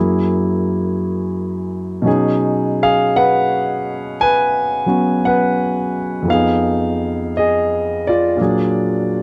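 Swung eighths drift at a slow 57 BPM in 4/4 through this brief, smoky and wistful jazz ballad excerpt, a solo concert grand piano ranging from F2 to G#5 across its 9.2 seconds. The piano sits up front, intimate and natural, with deep bass, long sustain and audible action noise, voicing lush chords that move from Gb9 to B69, then Fm7b5 and Bb7b13. The close, dry 1970s-style studio sound carries only a moderate booth ambience, lending the playing an intimate closeness.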